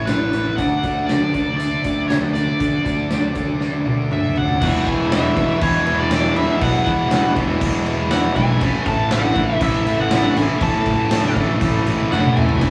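Bittersweet and restless, this 120 BPM quiet-loud alternative rock passage in E mixolydian opens with a nasal, parked-wah lead guitar singing its overdriven melody over a thick fuzz guitar riff, a growly fuzz bass, a dark, smooth big rock kit with a punchy kick, and a very quiet fingerpicked jumbo acoustic with audible finger squeak that stops at 4.5 s, until a drum fill ushers in a heavier stretch at 4.6 s where a background double-tracked distorted guitar, a faint crunchy overdriven guitar and a very quiet vintage string machine with sawtooth cellos and ensemble chorus thicken the Eadd9 and A chords, all captured with the rough, small-room feel of a rehearsal space.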